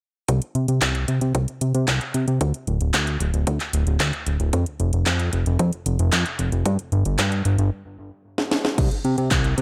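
Set in a digital ambience, this short, sunny and romantic italo disco cut moves at 113 BPM in a straight 4/4. The fat analog bass sits up front from 0.3 seconds, a thick, detuned blend of sawtooth and square waves with saturation, a fast-attack filter pluck and sustained notes reaching from D1 to C3. A filter sweep runs across the bass line for nearly the whole passage. Underneath, a punchy, layered electronic kick carries a high-pass filter and studio reverb, while a prominent house kit adds a cracking snare, metallic hi-hats, handclaps and crash cymbal, its reverb gated as well as roomy, with both drum parts sharing a tape-flavoured polish. The groove breaks off at 7.7 seconds, and a short drum fill at 8.4 seconds leads out of the section.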